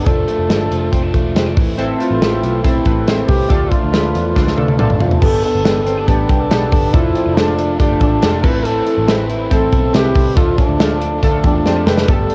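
A close-miked duduk opens this youthful, breezy stretch of jangly indie pop, its soft-attack, scooped notes and vibrato carrying a folk-style melody over a phaser-tinged overdriven semi-hollow guitar, slightly broken-up arpeggios from an electric guitar through a small old amp with analog delay, and a dark, round, foam-muted bass. A punchy modern studio drum kit sits up front with 12-bit sampler grit, adding fills at 4.4 and 11.7 seconds. Glossy chorused retro synth keys, with detuned pulse and sawtooth tones, pulse-width modulation and a filter sweep, join at 1.8 seconds, all captured as a home cassette recording in a small room with light reverb.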